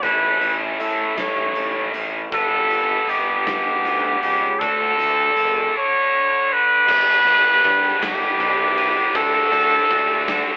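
Indie rock in a slow, jangly and carefree 6/8 at 53 BPM, cut from a longer piece, where a clear, vintage-toned solo trumpet with light vibrato and scooped notes carries the melody up front over a bright, double-tracked high-gain distorted guitar riff, a growly fuzz fingered electric bass, and a punchy big-room rock drum kit with crash, hi-hat, ride and a medium-tuned snare, while a grainy, barely audible tube shaker joins at 6.9 seconds as the chords move through A, G and D, the whole band heard live in one room with moderate reverb and a telephone-like sound.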